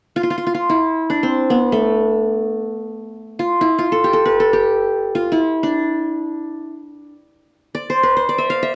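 Unfolding in free time, this soulful, melancholic Turkish excerpt in D makam huseyni features a solo acoustic qanun carrying the melody up front, its plectrum-plucked triple strings sounding bright-edged as it ranges from A3 to F5 between 0.2 and 8.8 seconds, set in a dark production with moderate studio reverb.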